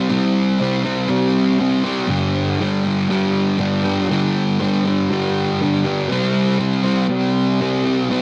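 Rock at 120 BPM in a straight 4/4, this short excerpt has a dreamy, hazy mood carried by a lone fuzz guitar that plays throughout its 8.2 seconds. The guitar is electric, picked and double-tracked, sitting up front with a warm, compressed distortion and a subtle chorus, moving from a C5 power chord to G5 at 2.1 seconds and returning to C5 at 6.1 seconds. A light reverb and digital ambience surround it, and the whole was captured as a home recording on cassette.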